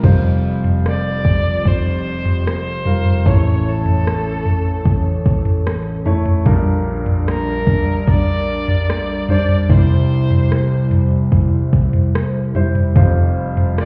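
Heard muffled as if through a wall, with the echo of a stone room around it, this heartfelt, hopeful pop ballad moves at a straight 74 BPM in F major, with chords passing from Fsus2 through A, Bb6 and C. An up-front concert grand piano with deep bass and long sustain carries the accompaniment over a dark, detuned analog pad with chorus and a slow attack, while a produced electronic R&B kit with a soft kick, overdrive, crash cymbal, rim click and toms also sits up front. From 0.9 s a single bowed violin, close and clear, sings the melody with smooth, even vibrato.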